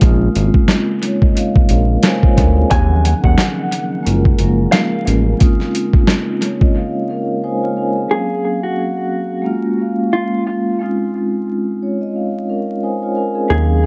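This echo-heavy mix is lightly reverberant and dusted with vinyl crackle, cut from a longer boom-bap hip-hop track with a tough yet reflective mood and a swung sixteenth-note feel. Up front, a gritty, pitched-down sampler-style kit with a thumpy kick, a medium-tuned snare and hi-hat sits beside a smooth synth bass that blends sawtooth and square tones with vibrato. A vibraphone played with soft mallets rings out metallic accompaniment through cassette-tape coloring and a boxy small room. Behind it, a flute-like tonewheel organ holds sustained chords through a fast rotary speaker. A dark, clean, fingered electric guitar takes the melody from 2.7 seconds, treated with tremolo and analog delay. The drums stop at 6.7 seconds for a short break, and the organ falls away at 8.1 seconds as the harmony moves to a Gbmaj9#11 chord. Vibraphone and guitar then carry the closing Bbm11 colors, and the bass slips back in briefly at 13.5 seconds.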